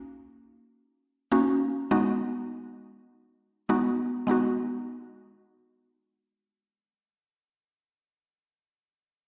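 Bittersweet yet driving, this short pop fragment moves at 101 BPM in a straight 4/4 in G# minor, tuned slightly flat to A4 = 437 Hz. A single mallet-like synth pluck carries the accompaniment for the full 7.5 seconds, its woody, round FM tone sitting up front with a fast attack, a mellow decay, a noise layer and a chorus shimmer, moving from D#m7 to G#m7 at 1.9 seconds. A wet plate reverb and the sound of a big system in a bare, roomy studio give the pluck a lingering, spacious tail, with a new section arriving at 4.3 seconds.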